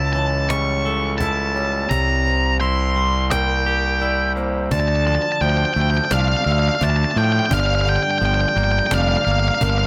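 A distorted, picked octave-fuzz lead guitar carries the melody up front between F5 and C#6, with analog delay trailing its dark fuzz tone across this melancholic, brooding post-rock piece in D minor at 86 BPM in a straight 4/4. Beneath it, a round, punchy fingered electric bass sits just as prominently, its overdriven fuzz growling low between F1 and A2. A clean, twangy electric guitar and a metallic, ringing vibraphone played with medium mallets, motor off and set in the background, both weave arpeggios through analog delay. A snappy, close and dry cajon with snares keeps time from 0.2 seconds, with its kick and snare dropping out between 4.0 and 4.7 seconds just before the second section begins. The harmony moves from A7/C# and C7 to Dmadd9 and Gm7, all framed by light reverb and a small room ambience in this piece cut from a longer work.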